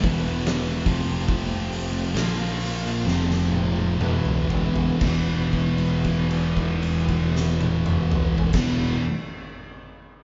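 Stoner and doom metal at a crawling 58-74 BPM in 4/4, this hypnotic, ominous clip cut from a longer piece pairs two dark, picked fuzz guitars and a bright, double-tracked high-gain guitar, each driving a riff, with a fuzz-soaked, tube-saturated fingered bass, while a lightly overdriven tonewheel organ holds full, warm chords through a slow rotary speaker in the background. Up front, an oversized low-tuned acoustic kit hits with a punchy kick, fat snare and dark cymbals in a bright, pumping stone room, slowing through the opening before a drum fill from 3.1 s leads into a long held note at 5.0 s. The band sounds live in one large room with moderate reverb, the top end rolled off for a murky, heavy weight, over chords of E5, F5 and A#5.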